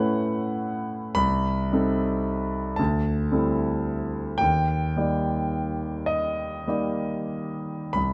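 Drifting in a flexible, rubato 6/8, this brief impressionist classical passage for solo grand piano, cut from a longer piece, feels luminous and dreamy as it moves from an A6/9 chord through C minor 6 and D9sus4 to settle on E-flat major 7. The piano sounds clear, polished and up front across its span from C2 to B5, its notes carrying a long sustain throughout the 8.1-second excerpt. Close, detailed miking and a light reverb keep the sound present and detailed.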